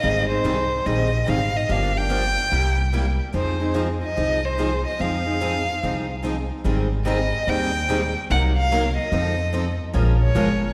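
A bowed violin with expressive vibrato and portamento carries a bittersweet, swinging melody up front in this excerpt of acoustic string swing, over a dark, thumpy pizzicato upright bass on gut strings, a bright picked steel-string guitar, and a second, boxy parlour guitar with finger squeak in the background, all set in the wet reverb of a church or concert hall as the harmony shifts at 6.7 seconds.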